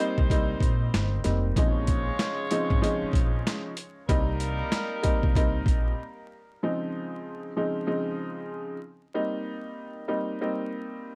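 A worn, slightly detuned upright piano and a clear, punchy horn section with light vibrato and octave doubling open this reflective yet tough boom-bap hip-hop excerpt at 95 BPM, moving through Cm7 and Bbm11 harmonies over a swung sixteenth-note feel. A growly, woody pizzicato upright bass and an up-front, gritty, compressed sampler-style kit of thumpy kick, medium-tuned snare, hi-hat and handclaps join almost immediately. Everything but the piano drops away by 5.9 seconds, leaving it alone under vinyl crackle and light reverb to drift through Dbmaj9 back to Cm7 until 11.2 seconds.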